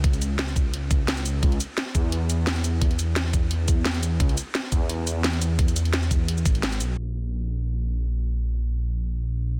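Liquid drum and bass at 173 BPM with a rolling, lush mood, this short cut from a longer piece is built on a deep, rumbling detuned saw bass, saturated and up front, that runs the full 9.6 seconds. A knocking electronic kick sits forward until 6.5 seconds, while a layered kit of cracking snare, bright hats and cabasa, given a small-room character and low-pass filtering, plays until 9.3 seconds. The dense, heavily limited master carries little reverb, and a filter sweep moves through the final stretch from 7.0 seconds as a new section begins.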